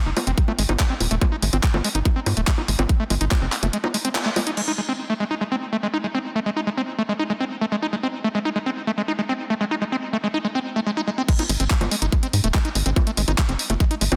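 A driving, hypnotic psychedelic trance clip in straight 4/4 at 143 BPM, opening with an overdriven electronic kick, a garage drum kit of bongos, handclaps, hi-hat and crash, and a punchy, dark sawtooth sequencer bass with a plucky filter, with a band accent landing at 4.2 seconds. A squelchy, resonant acid line screams through distortion, chorus, digital delay and sidechain pumping from start to finish, carrying the middle stretch on its own once the beat drops away. At 11.3 seconds the kick and drums crash back in for the drop, with the bass following at 11.5 seconds, all set in a lush hall reverb under a dense, heavily limited modern master.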